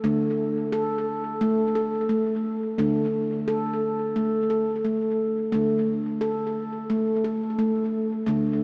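Lightly swung sixteenths in an unhurried 4/4 carry this short, hypnotic fragment of meditative world music, where a solo handpan sits up front with a ringing, nitrided-steel voice and tape echo, played by fingertips and bathed in a huge ambient reverb that gives the gentle, dreamy mix a small-speaker glow.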